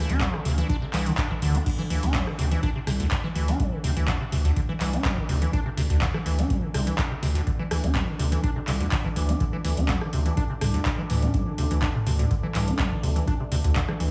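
Acid house at 124 BPM in a straight 4/4, this raw, trippy excerpt from a longer piece sits on a single Dm7 chord throughout. Up front, a squelchy, hollow square-wave acid bass plays a resonant riff with a filter sweep and fast, decaying notes, roughened by overdrive and trailed by tape echo. Beneath it, a thick, saturated sine sub bass holds sustained low notes and pumps with sidechain compression. A booming analog drum machine brings metallic hats, handclaps, rim clicks, toms and crash cymbal, while a dry, tape-warm electronic kick with a deep punch enters at 0.2 seconds. In the background, a dark, moody pad of detuned sawtooth unison voices and a sine sub octave swells in slowly with chorus and its own reverb, also pumping against the sidechain, and the whole mix is dreamy and soaked in plate reverb.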